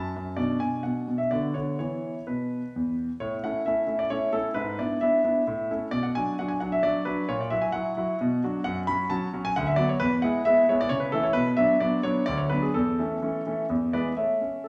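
Set in a lilting, straight triple metre, this graceful and playful classical-period sonatina fragment features a solo concert grand piano spanning deep bass to the upper treble. The piano sounds clear, polished and intimate, placed up front with its action noise audible, while a wet recital-hall reverb lends it a natural bloom. A brief opening phrase gives way at 3.2 seconds to a longer passage that circles through the harmonies before settling on an A chord at 14.2 seconds.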